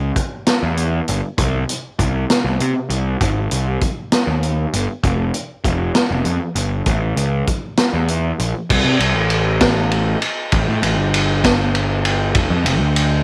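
Psychedelic rock in 6/8 at 66 BPM, this trippy, hazy excerpt pairs an overdriven, fuzz-laden picked electric bass, dark and round, with a vintage acoustic drum kit whose dark cymbals and rolled-off top sit alongside a punchy kick and medium-tuned snare. Both parts sit up front in a dry, close sound, the bass starting at 0.0 seconds and the kit joining at 0.2 seconds with crash, ride, hi-hat, snare and kick. A new section arrives at 8.7 seconds, carrying the groove on until the cut.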